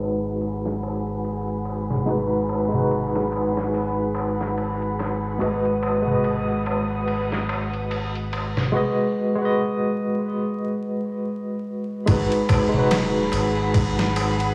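Trip hop with a smoky, hypnotic mood, cut from a longer piece, where a barky, lightly overdriven tine electric piano up front carries tremolo and tape echo over a veiled, con sordino violin section under a filter sweep until 12.1 seconds, a round, mellow dub sub bass, a gritty, pitched-down boom bap sampler-style kit with a thumpy kick entering at 0.4 seconds, and a crisp metal-shell darbuka sitting distant in the background, all wrapped in an echo-heavy mix with vinyl crackle.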